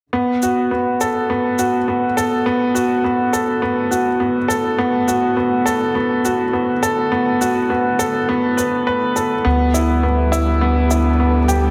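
Piano and strings electronica in D major at 103 BPM, this hopeful, luminous fragment of a longer piece moves in a straight 4/4 feel. A bright upright piano sits up front playing a riff, its woody, slightly detuned tone carrying audible action noise, a worn intimacy and long sustain, wrapped in a diffuse ambient delay. Behind it, a muted symphonic string section holds veiled, con sordino chords with vibrato, fading in across the whole passage and staying in the background. An electronic, layered shaker with overdrive and a small room reverb ticks along from 0.4 seconds. At 9.5 seconds, as the harmony moves from D6 to G6/D, a round analog bass enters on a deep, dark D2 with a fast attack and sustained, wave-folded body. The mix is dreamy and soaked in plate reverb with a 1.9-second tail over a small room ambience.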